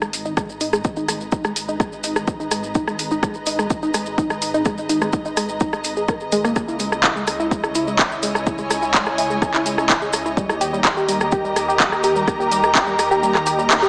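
Melodic techno with a hypnotic, dark mood, built on a tight, driving synth arpeggio that pumps against the beat and is coloured by chorus, dub echo and a filter sweep, while a deep, rumbling detuned saw bass pulses beneath. An overdriven house kit of bright hats, handclaps and rim clicks sits up front with grainy maracas, a punchy electronic kick enters at 0.4 seconds, and a lush symphonic string section with soft, bowed vibrato fades in throughout. The kick drops out at 13.2 seconds before a full-band accent at 13.7, all set in a lush hall reverb with a small-speaker tone in this cut from a longer piece.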